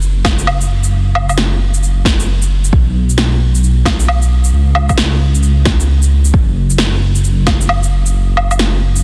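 A dark, rumbling detuned sawtooth bass pumps up front beside a punchy, overdriven electronic shaker, snare and woodblock kit in this ghostly, melancholic future garage fragment with a swung 16th-note feel, joined at 0.2 seconds by a deep, layered, overdriven electronic kick that drops out at 7.6 seconds, all set in a dry, dense, heavily limited master dusted with vinyl crackle.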